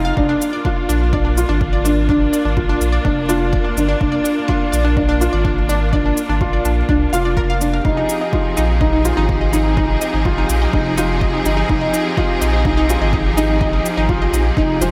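Moving and hypnotic, this piano and strings electronica cut from a longer piece sits in F dorian at 125 BPM in a straight 4/4, its harmony shifting from Bb/F to Fm7 at 7.9 seconds. A felt-muted upright piano carries the riff in a narrow middle range, its soft, intimate tone revealing audible action noise and short sustain, touched by subtle chorus and diffuse ambient delay. Around it, a clear studio string section holds sustained chords with focused, bowed vibrato, while an analog pluck spins bright, detuned sawtooth arpeggios with a wave-folded edge and filter sweep, washed in chorus and the same diffuse delay. A round analog bass sits up front with a deep, dark sine-like tone, and it, the strings and the pluck all breathe with sidechain pumping. A punchy, layered electronic kick enters at 0.2 seconds and a shaker at 0.4 seconds, both re-recorded in a small room. The whole dreamy mix is soaked in a lush hall reverb with a 1.8-second decay.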